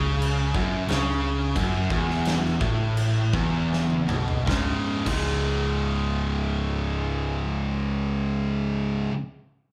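A bright, double-tracked overdriven guitar sits up front in this sludgy, hypnotic stoner and doom metal excerpt, riffing over F#5 then C#5 alongside two thick fuzz guitars (one dark and in the background), a growly, amped electric bass and a big acoustic rock kit with a punchy kick and rolled-off top, as the band slows through the opening 4.5 seconds into a drum fill from 3.7 seconds before the drums stop at 5.3 seconds, all captured live in a large reverberant studio room.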